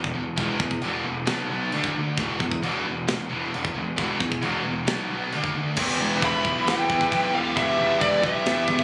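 Heavy metal with a heavy, epic mood, this short excerpt is cut from a longer piece in a straight four-beat metre. It opens with two distorted, scooped rhythm guitars riffing in the background over a growly, fuzz-driven picked bass and a tight acoustic drum kit up front, with a tight kick, medium-tuned snare, crash and china cymbals, and a rolled-off top. At 5.8 seconds the music moves into a new section on an E minor chord. A full pipe organ principal chorus with baroque voicing enters there with sustained chords, along with a very quiet, double-tracked fuzz guitar riff. From 6.3 seconds a bright high-gain lead guitar carries the melody up front, over a darker high-gain second line that starts just before it at 6.2 seconds. The sound is that of a phone recording in a club, with little reverb.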